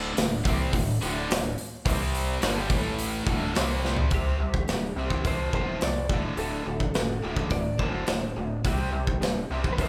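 A straight 4/4 groove at 106 BPM drives this powerful, energetic hard rock clip. A big acoustic drum kit sits up front, with a boomy kick and medium-tuned snare entering at 0.2 s and a fill at 3.8 s, while a gritty, saturated sawtooth synth bass with oscillator sync, ring modulation and a filter sweep underpins three bright, picked electric guitars playing the riff in the background: a cranked stack guitar with overdrive, a tight distorted guitar, and a double-tracked high-gain guitar that drops out at 4.1 s. At that moment a lightly driven, compressed lead guitar with a slightly broken-up tone takes up the melody over chords such as Csus2, F5 and D, the band sounding as if playing live together in one room with a moderate, large studio reverb.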